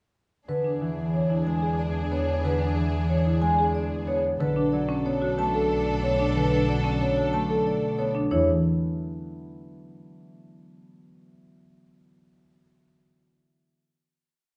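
A bright, hypnotic minimalist classical piece in 6/4 at 184 BPM in E mixolydian opens at 0.5 seconds with a soft-malleted vibraphone ringing out a repeated short melodic cell over thumb-plucked concert harp, lush bowed violins holding swelling chords and long bowed notes from a rich double bass section, with woody rosewood marimba arpeggios joining at 0.6 seconds. The music moves from E7 to Bm7 and reaches a final E5 chord at 8.3 seconds, after which the harp rings on alone once the other parts stop by 8.5 seconds, all heard from further back in a large reverberant studio room.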